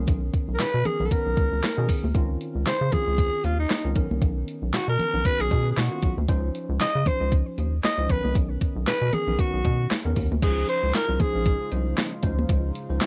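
Heard through the haze of a home cassette recording with light reverb, this cut from a longer early-eighties boogie funk piece moves at 116 BPM in 4/4 with a lightly swung sixteenth feel in Db major, and its mood is smooth and danceable. A clean 12-bit drum machine sits up front with a thumpy kick, medium-tuned snare, hi-hat, handclaps and crash cymbal, its sampler-style hits re-recorded in a small room. Beneath it, a rubbery square-wave bass bounces with a fast, resonant filter pluck and a dark, hollow tone, while very quiet, high-tuned congas add bright, damped, close and dry accents. A worn, slightly out-of-tune tine electric piano, lightly overdriven as if through built-in speakers, comps on Cbmaj9 and Dbmaj9 chords. From 0.6 s a growling alto saxophone takes the lead, breathy and raspy with vibrato and a gritty, vintage pop edge. At 10.4 s a chorused pulse-width pad enters in the background, adding a shimmering, retro sustain with a soft attack and a sub octave.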